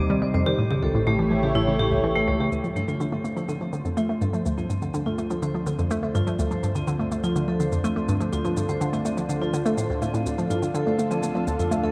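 A hollow, bouncy square-wave pluck sits up front with a detuned riff colored by chorus, phaser, cassette tape and tape echo in this mysterious, cosmic fragment of sequencer-driven space music at 124 BPM in D minor. Around it, metallic hard-mallet vibraphone arpeggios ring with tape echo, a lush, thick, bright unison pad holds sustained chords through chorus and phaser, and a round, deep analog bass stays in the background, all moving over Cm and A7 before settling on Dm7 at 2.5 seconds. From that point, electronic shaker and congas with tape echo enter as the vibraphone, pad, bass and drums fade in, the whole mix bathed in a vast, echoing cathedral reverb.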